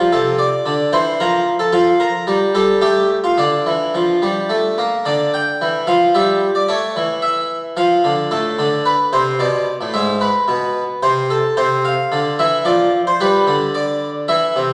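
Moving in a straight 3/4 at 110 BPM, this stately yet lively baroque-style two-part invention unfolds as a brief excerpt cut from a longer classical piece. A solo harpsichord plays throughout, spanning G#2 to G5. It has a plucked, brilliant French-style tone with full octave strings. The instrument is close-miked, dry and up front, set inside the generous reverb of a recital hall. The music begins in D minor, passing through chords such as F, Dm and Am, with a turn to E/G# before the close. At 11.6 s it shifts into C major, moving from C through Dm7/F to G until it breaks off at 14.7 s.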